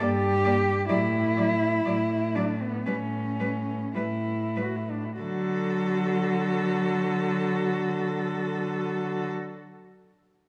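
Serene and lyrical, this short excerpt from a classical piece for cello ensemble drifts in a rubato 4/4 at 47 to 68 BPM in D major, easing to a slower pace over the first 5.2 seconds before the harmony settles from G minor through A7 onto a D chord. Four bowed cellos play together throughout: a clear, distant melody cello with vibrato sits higher and softer than the rest, while a warm, up-front second line and a rich, focused accompaniment fill the middle, and a clear, even bass cello with light vibrato anchors the low register. A wet scoring-stage reverb surrounds the ensemble with a halo.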